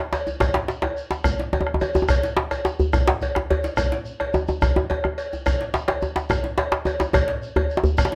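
West African traditional drum ensemble music, earthy and festive, moving at 142 BPM in a 12/8 metre with a straight feel, cut from a longer piece. A metallic cowbell, a distant, grainy shekere and a deep, dark bombo played close and dry sound alongside two djembes: one tight and cracking, struck with soft hands and sitting up front, the other medium-tuned, compressed and saturated under hard hands in the background. A drum fill arrives at 3.1 seconds, and the ensemble sits in moderate studio reverb.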